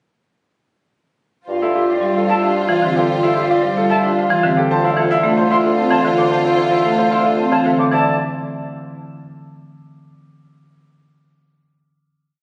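A woody, hard-mallet marimba sits up front of this urgent yet meditative minimalist pattern piece in 3/4, repeating its cell alongside brilliant concert grand piano arpeggios and a clear baby grand melody set back in the mix, while a pure, vibrato-laced silver flute traces arpeggios in the background, a roomy French horn pulses with notes that swell and fade, a lush, bowed string section holds smooth chords, and a solo bassoon anchors the bass with long notes, all bathed in a wet scoring-stage reverb and captured on a phone in the room before settling on a final chord at 7.9 seconds.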